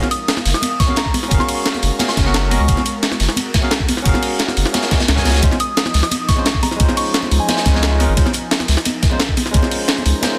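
A straight 4/4 groove at 175 BPM drives this lush, dreamy liquid drum and bass passage in Db major, built on an up-front, gritty sampler-style breakbeat kit with a high-tuned snare, hi-hat and ride, layered with a crunchy, rolled-off second break kit and warm congas in the background, while a thumpy electronic kick arrives at 0.8 seconds. A deep, thick saturated sine sub bass sits up front beneath a bright, barky tine electric piano, lightly overdriven through a combo amp with delay, and a very quiet, airy, breathy pad with chorus and phaser sustains chords moving from Gbmaj9 to Dbmaj9 at 5.4 seconds. A soft, pure FM synth bell carries the melody in two short phrases, coloured by chorus and digital delay, all within light small-room reverb and a dense, heavily limited modern master in this snippet cut from a longer piece.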